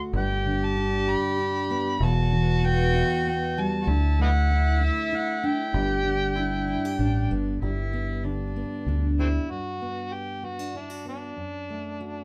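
In a three-beat metre with a straight feel, this nostalgic, tender acoustic folk-pop ballad rests on a full-bodied, up-front fingerpicked jumbo steel-string guitar and a dark, round fingered electric bass, while a distant, reedy bowed cello with a nasal gut-string tone adds a period-style second line. An amplified, gritty overdriven harmonica carries the melody as a pop-style solo with vibrato and tongue slaps, heard in a small room with moderate reverb. Cello and bass stop around 9.5 seconds, leaving guitar and harmonica to finish this fragment of a longer piece over chords moving from Gmaj7 to D/F#.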